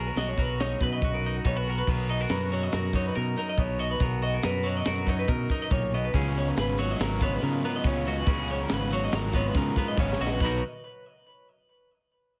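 Set in a straight 5/4 at 141 BPM, this wistful, intricate passage of math rock and midwest emo sits in B lydian. A clean, compressed twelve-string electric guitar carries the accompaniment through plate reverb. Above it, an electric guitar through a small old amp picks twangy, slightly broken-up arpeggios, trailed by digital delay and plate reverb. A growling fingered bass with overdrive anchors the low end, while a crisp fusion drum kit sits up front with a punchy kick, a high-tuned snare and dark cymbals, all in a light, airy studio room. At 6.1 seconds a crunchy, double-tracked overdriven guitar riff joins as the harmony shifts from Bmaj9 to C#7sus4, and a drum fill at 10.0 seconds leads into a close on B.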